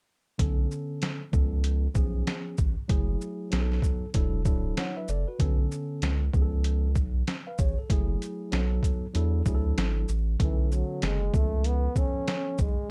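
Dark, lightly reverberant production frames this cool, nocturnal jazz-hop fragment, where gritty, overdriven sampler-style drums with a thumpy kick and a thick, saturated sine sub bass sit up front beneath a mellow tine electric piano bathed in plate reverb. The piano comps through jazzy seventh and ninth chords until a jazz-style solo trombone with light vibrato and scooped notes enters at 10.4 seconds.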